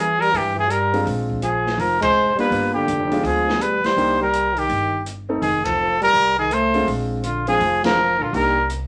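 Swinging at 165 BPM in 4/4, this sophisticated, playful small-group jazz passage sets a clear, up-front trumpet with scooped notes on the melody over a mellow, close-miked trombone with light vibrato, a woody pizzicato upright bass, an open drum kit with dark cymbals and a boomy kick that enters at 0.2 s, and warm grand piano accompaniment from 0.9 s, all punctuated by band accents in a moderate studio room.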